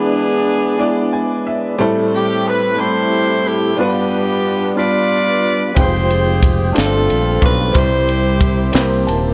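Light reverb and a small-room ambience frame this slow, reverent and hopeful gospel passage in 6/8 at 60 BPM, where an up-front saxophone section carries the melody with jazz-style vibrato over woody upright piano accompaniment with fills and a background tonewheel organ holding sustained chords through a slow rotary speaker, light overdrive and chorus vibrato, before a growly fingered electric bass and a crisp fusion drum kit with punchy kick, high-tuned snare and ride cymbal join at 5.8 seconds as the chords move from E7 through Am7 and G7 toward C and C7.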